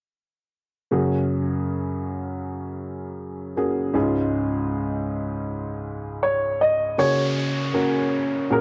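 A baby grand piano carries the melody in this hopeful, tender pop fragment, entering at 6.2 seconds with an open, warm tone that sits up front and is touched by tape echo. Before it arrives, an upright piano plays the accompaniment alone from 0.9 seconds, its woody, smooth and vintage character given long sustain and a close, present placement. Both pianos carry the soft grain of cassette tape, and the harmony moves gently between add9 chords. At 7.0 seconds, as the piece shifts into a new section, an electronic downlifter sits quietly beneath the pianos. Light reverb and a small-room ambience give the whole a homemade, intimate feel, like a short snippet cut from a longer piece.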